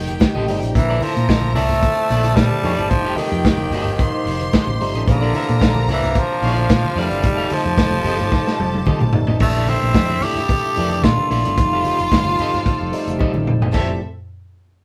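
Disco groove with a joyful, celebratory lift, cut from a longer piece, where a raspy, up-front tenor saxophone carries the melody over a lush violin section, a barky overdriven tine electric piano that adds a fill from 12.7 s, a round, punchy hollow-body bass, a slightly broken-up guitar with tremolo in the background, a muffled vintage drum kit with fills at 8.3 s and 13.2 s, very quiet soft-handed congas and distant, mellow brass chords, all played live in one modest room as F9 and Bbmaj9#11 alternate before settling on Fmaj9.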